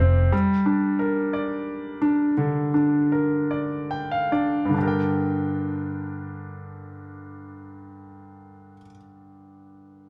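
A bright, polished concert grand piano sits up front from the start, carrying an aching, melancholic pop accompaniment in G minor at a slow 6/8 of about 45 to 61 dotted-quarter beats per minute, with deep bass under its brilliant upper register. The tempo slows from 0.3 to 4.8 seconds, and a piano fill from 3.5 seconds leads into a new section at 4.8 seconds. A wet studio reverb gives the piano the feel of a band playing live in one room, and this short fragment is cut from a longer piece.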